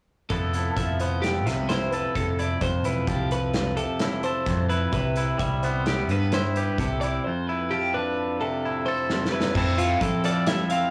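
Math rock with a midwest emo lean, this short excerpt moves at 130 BPM in an odd 5/4 metre with a straight feel, its mood intricate and playful in F lydian. An up-front, twangy electric guitar carries the accompaniment, clean and compressed with a bright edge, while a twelve-string electric guitar spins sparkling picked arpeggios higher up. Beneath them a hollow-body short-scale bass, picked and amped, gives a dark, round bottom, and a loose indie drum kit with a punchy kick, medium-tuned snare and dusky cymbals pumps in a small room. The harmony drifts from Fmaj7#11 through Cmaj7 and Fmaj13, and a drum fill at 9.1 seconds leads into a brief new section on Fmaj7 at 9.6 seconds. The recording is blown-out and overdriven, with light reverb and studio ambience around the band.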